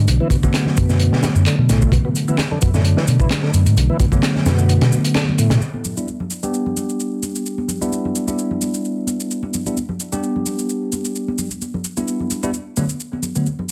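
A dense, heavily limited mix in moderate studio reverb carries this energetic, raw breakbeat excerpt, where a bright, bell-like tine electric piano stabs through chorus and delay up front while a round, amped hollow-body bass, crunchy, saturated drums with a high-tuned snare and tight kick, and an overdriven tonewheel organ riff on slow rotary speaker all drop out after a band accent at 5.2 seconds, leaving layered electronic shaker and handclaps and soft-handed, ringing congas beneath a filter sweep on the piano from 5.6 to 13.7 seconds.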